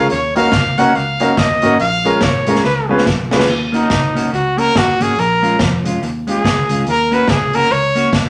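A clear, close-miked trumpet leads this energetic, mischievous ska excerpt in Eb minor at 142 BPM, its vibrato-laden pop-style solo sitting up front over a swung 4/4 feel and a chord cycle built on Ebm7, Bbm7 and Db7. A clean electric guitar carries the accompaniment and a round, punchy fingered electric bass holds down the low end, while a woody upright piano with long sustain adds stabs until 3.4 seconds. The street-band drum kit, airy with dark cymbals, a boomy kick and dub echo, plays a fill from 2.6 to 3.5 seconds, all set in a wet studio reverb.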